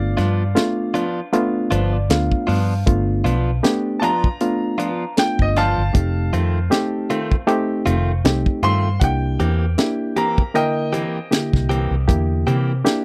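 This is a swaggering, soulful straight-eighth soul blues at 78 BPM in 4/4, with a light swing on the sixteenths, cut from a longer piece. A bright, woody upright piano takes the solo up high throughout as the second line, while a barky, reedy electric piano with light overdrive holds down the accompaniment up front and adds a fill from 1.3 to 2.9 seconds. Underneath, a dark, round, foam-muted fingered electric bass sits forward in the mix, and a tight funk drum kit with a high-tuned snare and an equally tight kick drives the groove on hi-hat, kick and snare. A clean, compressed, direct-recorded electric guitar adds picked stabs coloured by spring reverb. The harmony moves through G7, F7 and C7, and the sound is dry and close, like a 1970s studio session.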